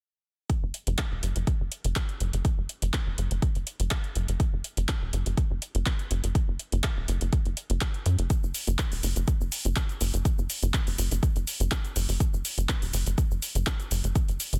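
Drums enter at 0.5 s in this emotional, expansive progressive house excerpt at 123 BPM in straight 4/4, tuned to A4 = 439 Hz: an up-front, deep, layered electronic kick sits beneath a tape-warm deep house kit of cabasa, handclaps and metallic hi-hats. From 0.6 s a tight, punchy sequencer bass drives between E1 and F#2, blending sawtooth, square and sine tones with a wave-folded edge, a fast-attack filter pluck, a moving notch and tube saturation, all pumping against the sidechain. The digital ambience and dense, heavily limited modern master carry the groove until 14.6 s.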